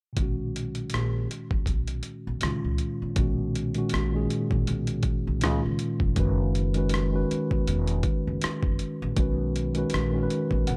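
R&B with a neo-soul lean, this short section from a longer piece moves at a relaxed 80 BPM in 4/4 with a lazy 16th-note swing, its mood sensual and smooth in B major. A mellow tine electric piano sits up front from the start, clean and direct, carrying the chords from Bmaj7 through C#69 and on to F#13sus4 before settling back on Bmaj7 at 9.2 seconds. An upright bass, plucked and woody, holds down the low end, entering at 0.2 seconds alongside the drums. The boom bap sampler-style kit is compressed and gritty, with overdrive on a thumpy kick, hi-hat and rim click, and it has the character of a sample re-recorded in a small room, placed close to the listener. The overall production is dark and warm with little reverb.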